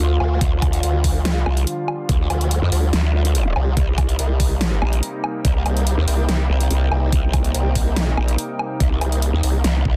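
Menacing and heavy, this half-time wobble dubstep excerpt at 143 BPM pairs a growling, saturated bass with a detuned formant-sweep wobble bass, both up front, over a lush, phased supersaw pad and a warbling, lo-fi tape-like pad in the background, moving from Dm to Cm7 while an overdriven kit of huge snare, bright hats and woodblock enters at 0.2 seconds and a knocking electronic kick joins at 0.4 seconds under a dense, heavily limited master.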